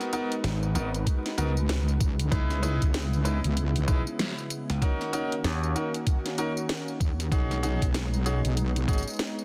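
A dense, heavily limited modern master with vinyl crackle, light reverb and a digital ambience frames this swaggering, playful glitch hop cut, taken from a longer piece and moving at 96 BPM in 4/4 with a 61% swing on the sixteenths in C# dorian. A smooth, detuned sawtooth pad holds sustained chords with a soft attack, its chorus and sidechain pumping colouring the progression from G#m7 through C#m7 and D#m7 to B6. A clear, natural grand piano adds stabs through sidechain pumping and digital delay. The drum kit is electronic and layered, with hi-hat, tambourine and a cracking snare running throughout, joined at 1.1 seconds by an up-front, pitched-down electronic kick that sounds thumpy and overdriven. Low end comes from two basses: a bright, punchy electric slap bass with overdrive that plays from 0.4 to 5.7 seconds, and a heavy, wobbling bass entering at 1.4 seconds that blends sawtooth and sine tones, with chorus and tube saturation giving it a compressed, detuned body up front in the mix.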